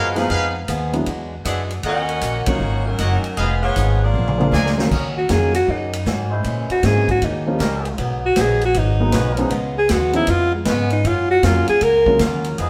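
A swung 4/4 pulse at 156 BPM drives this brassy big band swing passage in Eb minor, played live by the band in a stone room with moderate reverb. The upright bass sits up front with a woody pizzicato tone, a boxy, picked acoustic guitar sits in the background, and the drum kit, with its punchy kick, medium-tuned snare, ride, hi-hat, crash and toms, keeps the swing moving. An intimate grand piano with audible action noise fills in the accompaniment. Over Fm7b5, Ebm7 and Bb7 changes, a clear saxophone section carries the melody with vibrato while a tight trumpet section adds present stabs, leading into a drum fill at 4.1 seconds. From 4.9 seconds, a nasal trombone section in straight mutes holds sustained chords, and at 5.2 seconds a scooped, up-front alto saxophone takes a solo through Ebm7, Abm7 and Db7 toward Gbmaj7.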